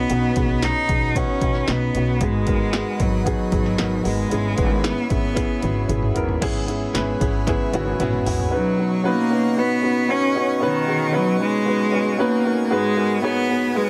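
Warm and uplifting, this piano-driven pop excerpt moves at 114 BPM in a straight 4/4 in B major, cycling through chords like Badd9, G#m7 and E6/G#. A clear, focused solo cello carries the melody up front, bowed with vibrato, over a dark, mellow concert grand piano whose deep bass anchors the accompaniment. A woody pizzicato upright bass with thumpy gut strings and a punchy, dry analog drum machine with kick, snare, hi-hat, toms and crash drive the groove, with drum fills marking the turns. At 6.4 seconds a clean, compressed electric guitar, recorded direct and picked, slips in with a riff in the background. Bass, drums and guitar drop out at 8.5 seconds, leaving the cello, piano and a soft, breathy pad with slow attack, long release and shimmering chorus sustaining bright chords under light reverb.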